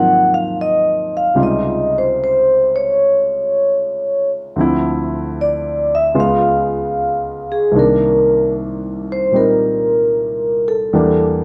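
A mellow, ringing vibraphone played with soft mallets carries the melody with a slow motor vibrato and plate reverb over a polished concert grand piano whose deep bass and short sustain supply the accompaniment, in a wistful, intimate jazz passage cut from a longer piece that swings gently at 75 BPM in 4/4 through lush chords such as Ab13, Dbmaj9#11 and Em7b5, both instruments sitting up front in a moderate large studio room.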